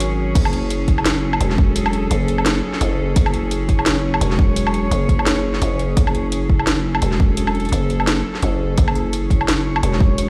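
In this tense, spacious half-time drum and bass excerpt, a layered kit of cracking snare, metallic hi-hats, crash cymbal and woodblock, a growling, buzzy 808-style bass with tube saturation, and a reedy, nasal chamber cello section holding sustained F#m chords with light vibrato and sidechain pumping sound from the start. At 0.4 s they are joined by a hard-clipped, overdriven electronic kick punching up front, all heard through stone room reverb as if on a big sound system in a bare room.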